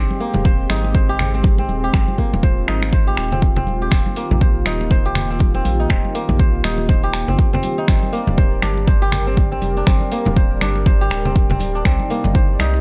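Spiritual and warm, this afro house passage, cut from a longer piece, swings gently over a dry, close sound as a smooth, detuned sawtooth pad with chorus holds sustained chords and a crisp, ringing fingerpicked kora spins arpeggios through tape echo, both pumping with the sidechain alongside a round, dark, nasal analog bass. Hard-handed congas enter at 0.1 seconds and an afro-pop drum kit of cabasa, finger snaps and metallic hi-hats follows at 0.2 seconds. A deep, overdriven, layered electronic kick drum sits up front from 0.5 seconds as the chords move from Abmaj7 through Eb and Gm to Cm7.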